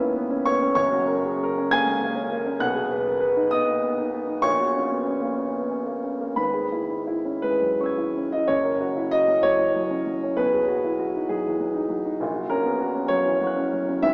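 A long, wet church reverb surrounds this short fragment, its 3.4-second tail filling a hall-like space, though the overall sound comes through as if from a small speaker. It is neoclassical minimalist piano, tender and hopeful, moving in 6/8 with a rubato feel that lets the pulse breathe. A concert grand plays alone throughout, warm and open in tone, sitting up front in the mix with a deep bass that reaches down to F#1 while the upper notes climb as high as G#6. The harmony circles gently through C#m7/G#, F#, B6 and F#/A#, and the same passage is stated once and then begins again at 8.5 seconds. The fragment ends at 14.1 seconds, cut from a longer piece.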